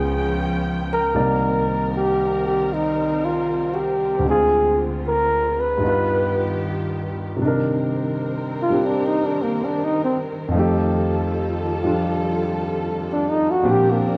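Bathed in the lingering reverb of a concert hall, this wistful, melancholic jazz ballad in C minor drifts at 77 BPM with a gentle swing: a mellow, breathy flugelhorn carries the melody up front with vibrato and a punchy edge before taking a solo from 7.4 seconds, a natural-sounding concert grand with deep bass accompanies it, and a lush bowed string section sustains soft-attack chords beneath, through harmonies such as Cm9, Dm7b5 and F9.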